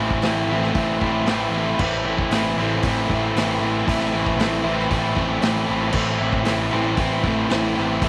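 A crunchy, bright overdriven guitar sits up front, double-tracked and picked, driving a riff in A minor over an 8.1-second cut from a longer garage rock piece at 116 BPM in a straight 4/4. Beneath it, a growling picked electric bass adds its own overdrive, while a vintage acoustic drum kit enters at 0.1 seconds with a tight kick, a medium-tuned snare, hi-hat and dark crash cymbals, its rolled-off top heard in a small room. The mood is raw and menacing, with light reverb and studio ambience around the band's sound.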